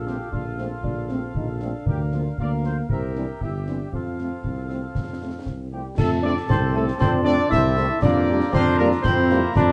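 A festive, proud military-style march for wind band opens at 117 BPM in a straight 2/4 feel, in F major, heard as a short cut from a longer piece. From the first beat a distant, roomy trumpet section carries the melody, while a clear, vintage euphonium and a woodwind section with light vibrato trace second lines above an up-front tuba bass. A smooth-topped French horn section fills in accompaniment in the background, and a close, acoustic percussion group of concert snare drum, concert bass drum and clash cymbals with dark cymbals keeps the march steady. At 5.7 seconds an airy, bell-like glockenspiel played with soft plastic mallets adds a ringing line in the background. The music moves into a new section at 6.0 seconds, and at 6.5 seconds a tight trombone section joins with sustained chords. The harmony moves from F/Bb through Bb/D and C7 to F, then on to Gm7/F and C7/F, all set in light reverb with a dark, warm production.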